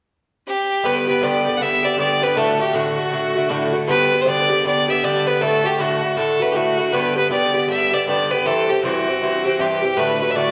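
Rollicking and bright, this Celtic folk passage, cut from a longer piece, swings along in 4/4, with a single bowed fiddle entering at 0.5 seconds to carry the melody in a clear, intense, slightly boxy tone with light vibrato and an airy bow. From 0.8 seconds a picked Irish bouzouki joins up front, its metallic double strings ringing out a chord accompaniment that moves between G, D and C. Both parts sit in the generous reverb of a recital hall.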